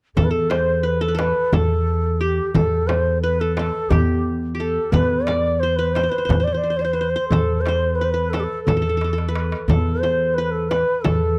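A reedy, airy low ney with vibrato carries a longing, soulful melody up front in this excerpt from a Turkish makam ensemble piece in 7/8, joined on a second line by a plectrum-plucked, bright-edged qanun and anchored by a woody, growly pizzicato upright bass, while a crisp metal-shell darbuka sits in the background beside a small, dry frame drum, with a drum fill at 9.0 seconds, all captured in a close 1970s-style studio sound touched by light reverb.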